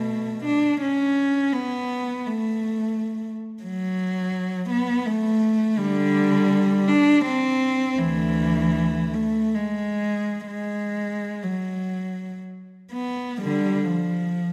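A solo bowed cello carries this serene, lyrical classical excerpt, played in a free, expressive rubato over a 3/4 metre and ranging from D2 to D4. Sitting close and up front, the single player's tone is warm and intimate, with light vibrato, a soft attack and an airy bow, set in a moderate scoring-stage reverb. The opening passage gives way to a new section at 13.4 s before the cello stops at 14.5 s.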